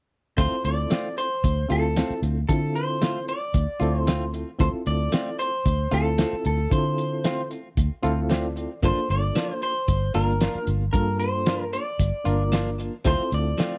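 Soulful and mournful, this straight-eighth soul blues excerpt in D minor at 114 BPM sets a slightly broken-up electric guitar melody over a barky reed electric piano with overdrive and fast tremolo, brilliant clean guitar stabs through tape echo, a round foam-muted fingered bass and a cloth-damped, thuddy drum kit with a fat snare, all captured in a dry, close 1970s-style room as the chords move from Dm7 to Gm7 at 8.8 seconds, just after an electric piano fill.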